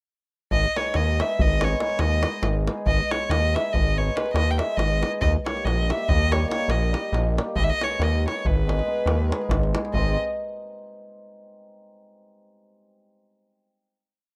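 A single bowed violin leads this short, complete Balkan wedding-band piece, up front, focused and boxy, with vibrato colouring its song-like melodic motifs in a virtuosic, bittersweet mood over a straight 11/8 metre. Beneath it, a gritty, saturated synth bass built from sawtooth, oscillator-sync and sine tones sits just as far forward, sounding aggressive and resonant with a filter sweep while it plays roots and fifths on the main beats. A davul keeps a tight two-stick drum pattern in a small-room sound, and from 0.8 s a mellow hammered cimbalom adds shimmering, ringing off-beat chords in close voicing, bathed in plate reverb. The violin, bass and drum all enter at 0.5 s, the ensemble plays through until a closing section at 9.9 s, and the parts stop together at 10.2 s. The whole has the light reverb and rough character of a home demo mix.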